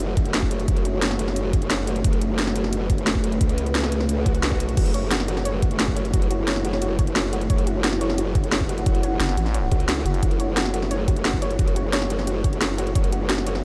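Set in a light digital reverb, this excerpt of dark, aggressive technical drum and bass opens on a deep, moody ambient pad of sustained chords, pumping under the sidechain, beneath an up-front growl bass that wobbles with formant-filtered, tube-saturated bite, while an overdriven, layered kit drives it with a cracking snare, bright hats, crash and a knocking electronic kick. A very quiet electronic swell at 4.2 seconds leads into soft, round pluck arpeggios that sit in the background with chorus and tape echo. A thick, growling FM bass pushes forward between 9.2 and 10.2 seconds.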